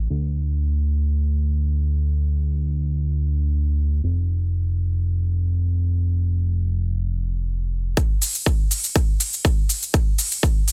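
Emotional and expansive, this progressive house excerpt moves at 122 BPM in a straight 4/4 feel, tuned to A4 = 439 Hz. For the first 7.9 seconds a fat analog bass carries the music alone, a thick, saturated sawtooth tone, detuned and wave-folded, sitting low between F1 and D2 with a fast attack and a sustained, mellow body. Sidechain pumping gives that bass its breathing motion, while a low-pass filter sweep runs through the opening eight seconds. At 8.0 seconds the bass drops away and a build-up begins as a punchy, layered electronic kick enters alongside an electronic shaker and crisp hi-hats, both carrying a tape-like warmth and sitting up front. The sound is dry and close, with little reverb, so each part feels immediate and produced.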